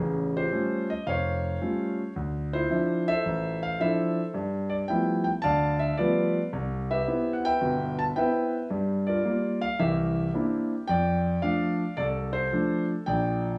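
A relaxed 4/4 swing at 110 BPM sets an easy lilt for this brief solo jazz piano fragment in C major, cut from a longer piece and running about 13.6 seconds. The concert grand sounds natural and up front, with a deep bass that reaches down to E#1 and a melodic reach up to A5, as it moves through an altered A7 into Dm9, G13 and Cmaj7 before turning toward F6 and Bb near the close. A moderate large-studio reverb adds a gentle bloom around the instrument, giving the whole a warm, unhurried mood.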